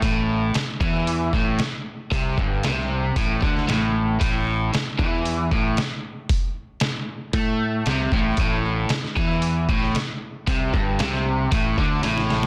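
A crunchy, bright overdriven guitar leads this indie rock excerpt, its double-tracked picked riff sitting up front on an A5 chord at 115 BPM in a straight 4/4, with a jangly, wistful mood. Beneath it, a growling fingered electric bass adds its own overdriven edge, while a lo-fi sampler-style drum kit, pitched down and muffled with a thumpy kick and fat snare, sounds re-recorded in a large room. The drums close the fragment with a fill at 12.0 seconds, all wrapped in digital ambience and a dense, heavily limited modern master.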